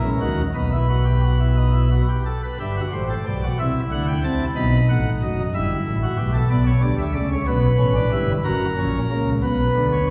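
Lively and elegant, this short excerpt from a baroque-style three-part fugue in E minor unfolds at 61 beats per minute in a straight 6/8. A solo pipe organ on its principal chorus carries every line, spanning from a deep F#1 up to B5, with a full baroque voicing and a crisp chiff at the start of each note. The organ sits up front, yet a wet concert hall reverb with a 1.9-second decay surrounds it, lending the sense of hearing from further back in the room. After a brief opening passage, a new section begins at 2.6 seconds and runs through 10.1 seconds. The harmony moves through dominant and half-diminished chords, turning from E minor toward B minor and settling on Bm at 9.4 seconds.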